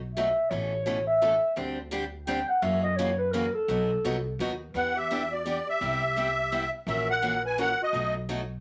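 Virtuosic and swinging, this excerpt of acoustic string swing moves at 170 BPM in a lilting 3/4 in E minor, with a breathy, dark clarinet taking a distant, whispered solo over bright, boxy picked steel-string guitar and a woody, thumpy pizzicato upright bass. At 4.8 seconds a reedy, shimmering musette accordion enters up front with the melody while the clarinet continues as a second line with vibrato and scooped notes. Short, wet studio ambience surrounds the ensemble, and the harmony drifts from B7 through Em7 and Cmaj7 before returning to B7.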